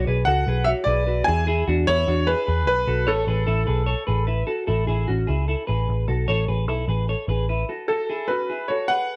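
A clean electric guitar plays twangy arpeggios bathed in lush chorus and plate reverb, joined from the start by a round, foam-muted picked electric bass. At 0.2 seconds a clear, woody upright piano with a slightly detuned, long-sustaining tone carries the melody through plate reverb, stepping away around 4.2 seconds and returning at 7.9 seconds over an F#m7 chord after the bass drops out. This breezy, bright jangly indie pop fragment in A major moves at a straight 150 BPM through Bm, E and A within a moderate studio room, cut from a longer piece.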